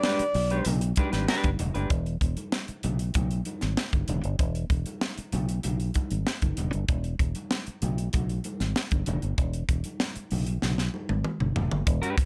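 Strutting and funky, this short cut from a longer funk piece moves at 96 BPM in a straight 4/4, with little reverb and a close, dry sound. A breathy, close-miked alto saxophone with jazz-style vibrato opens with a brief solo phrase on D5, ending by 0.8 seconds, while a clean, dark electric guitar plays a rootless E7#9 chord, and the harmony moves to E5 at 1.9 seconds. The crisp fusion drum kit runs throughout, featuring a high-tuned snare, punchy kick, hi-hat and toms in an airy, polished studio sound, and it plays a fill from 10.6 to 11.9 seconds. A round, fingered electric bass, direct and amped, enters at 0.2 seconds to hold down the low end between E1 and B1 up front in the mix. Ringing congas sit distant in the background, sounding as if set in a large room.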